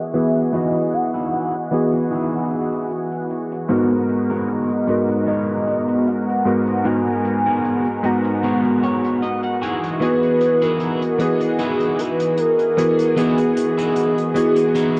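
Cassette-tape haze and light reverb wrap this melancholic, woozy vaporwave fragment, cut from a longer piece and moving at 76 BPM with a lightly swung feel over Emaj9 and G#m9 chords. A velvety, vibrato-tinged synth lead carries the melody through chorus and tape echo, while a clangy, up-front electric grand piano with analog chorus plays accompaniment and a thick, warbling detuned pad holds sustained chords in the background. An electric guitar at the edge of break-up, filtered and echoed, enters at 0.5 seconds with a picked riff under a filter sweep, adding a clean fill at 8.4 seconds, as a distant hi-hat with gritty 12-bit sampler texture ticks beneath it all.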